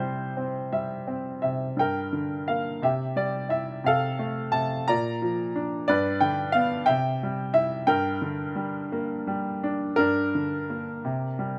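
A gentle 6/8 lilt moves in dotted-quarter pulses at about 55-61 BPM, stretched and eased by a free rubato. This is lyrical classical music for solo baby grand piano, melancholic and reflective in G dorian, tuned slightly below standard pitch. The piano spans G2 to Bb5, and its tone is brilliant and natural, with a short sustain that keeps each chord distinct. Harmonies shift from C to Gm, through F/C and Bb, then to G before settling back on C and Gm. A new section begins at 10.0 s and closes on a C5 at 11.0 s. Close, detailed microphones place the instrument up front in a light reverb, and the passage is cut from a longer piece.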